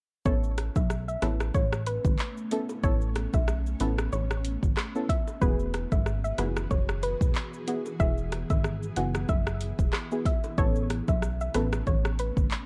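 A swung 93 BPM dancehall groove in A major opens this sunny, bouncy fragment, where an up-front electronic afro-pop kit with deep kick, metallic hats, handclaps, rim click and shaker plays alongside a punchy, funky analog bass, while very quiet tight high-tuned bongos add color, dark chorused chord stabs pump beneath a soft, round plucked melody with digital delay, an ethereal airy pad with tremolo and reverb drifts in behind them at 1.7 seconds, and a worn, warbling cassette-tape haze tints the whole mix.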